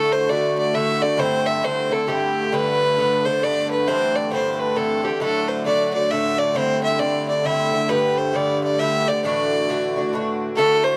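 A dry, close recording with a 1970s studio character and a touch of light reverb presents this cheerful, lively Celtic folk tune in D mixolydian, taken from a longer piece. It moves at 134 BPM in 3/4, with a swung eighth-note feel that gives the waltz-time lilt a skip. Up front, a single bowed fiddle carries the melody with a biting, earthy edge and light vibrato. Beneath it, an acoustic Irish bouzouki picks out a bright, metallic accompaniment on its doubled strings, while a musette accordion holds a reedy, shimmering drone with a vintage, band-limited tone. Over about 11 seconds, the harmony circles through D, Cadd9 and G, settling on Dadd9 at 9.2 seconds.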